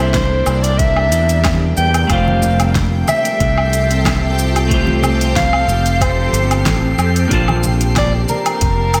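A vibrato-laden soprano saxophone with scooped notes and a vintage 12-bit sampler grit carries the melody through this smooth, sunny sunset chillout excerpt, floating over a dark, clean electric guitar in diffuse delay, a shimmering, phased ambient pad, a bright, growly fingered electric bass sitting up front, and a tape-warm deep house kit of fat snare, metallic hi-hats, shaker and woodblock with a deep electronic kick, while very quiet congas join at 2.3 seconds and a glassy texture of drifting overtones settles into the background from 2.9 seconds, the mix soaked in lush hall reverb for a dreamy feel.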